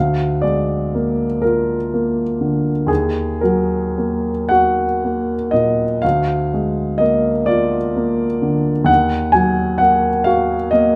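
A grand piano opens alone on a Bb7/D chord, the start of a short cut from a longer romantic nocturne. The mood is yearning and mournful, with a slow 12/8 pulse stretched freely by rubato. The harmony sways between Bb7/D and Ebm, returning to Bb7/D at 6.0 seconds before settling again on Ebm. The playing spans from D2 in the bass up to Ab5, and the instrument sits up front with an intimate, natural tone in which the noise of the key action can be heard. A moderate reverb from a large studio gives the sound gentle space, and the passage ends at 11.0 seconds.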